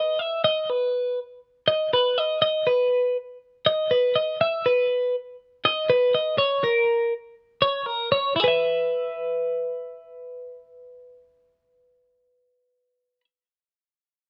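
Dry, open-air sound frames a bright, clean, twangy twelve-string electric guitar playing solo and up front in this wistful, playful rock excerpt at 121 BPM in straight 4/4, its compressed, picked lines ranging from E4 to E5 over chords moving from B through Badd11 and A#m before settling on E5 at 8.4 seconds.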